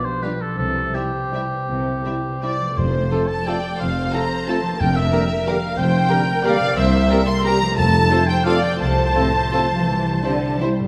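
In a rubato 3/4 at 151-199 BPM, this sweeping, festive orchestral excerpt in F major opens with a ringing, thumb-plucked concert harp in arpeggios and a roomy solo oboe on a second line, joined at 0.2 s by a lush, focused violin section carrying the melody, a very quiet, expressive second violin line, smooth violas, and a warm French horn section holding chords. Cellos and double basses with vibrato enter on the bass at 0.6 s, and an airy, tongued flute adds another line from 2.4 s. From 3.1 s a close-miked, mellow trumpet plays stabs over a very quiet trombone section, while very quiet calf-headed timpani on F2 mark the passage beneath a moderate scoring-stage reverb.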